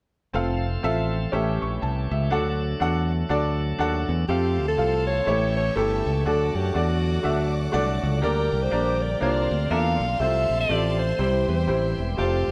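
Hopeful and soulful, this gospel excerpt moves at 122 BPM in 4/4 with a swung eighth-note feel, set in F major. From the start at 0.3 seconds, a clear, up-front baby grand piano plays the accompaniment over a fingered electric bass with a direct, amped tone, while a bright tonewheel organ holds sustained chords through a fast rotary speaker with light overdrive, giving it a full, shouting edge. At 4.3 seconds an alto saxophone takes the melody in a jazz style with vibrato and tape echo, and a lush bowed string section enters behind it, distant and expressive, holding sustained chords in the background. The harmony cycles through F, A7 and D before moving to Gm, C9sus4, F and C in the closing bars. A moderate large studio reverb gives the ensemble a sense of space, and the piece is cut from a longer performance.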